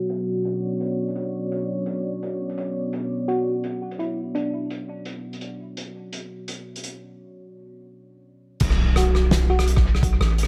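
A loose, lightly swung half-time drum and bass groove opens this dark, cinematic excerpt, its distant, roomy acoustic kit of crash, hi-hat, rim click and fat snare washed in dub echo alongside a deep, warbling, detuned sawtooth pad up front that pumps and moves through a filter sweep. A bell-like FM electric piano adds brief, sparkling phrases roughened by 12-bit grit, chorus and tremolo, all within an echo-heavy, low-passed mix. At 8.6 seconds the drop arrives, with a long, mellow 808-style sine bass up front, an overdriven, pitched-down electronic kick and an electronic impact in the background, and a short return of the electric piano.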